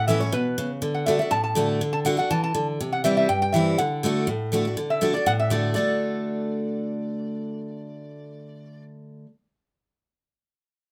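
A mellow, nasal lap resonator guitar carries the melody with a metallic, fingerpicked slide tone over a bright, full-bodied, up-front picked dreadnought acoustic guitar in this joyful, lively bluegrass fragment at 243 BPM in D mixolydian, moving through A, D, C and D chords in moderate studio ambience, with the resonator stopping at 8.8 seconds just before the accompaniment ends at 9.3 seconds.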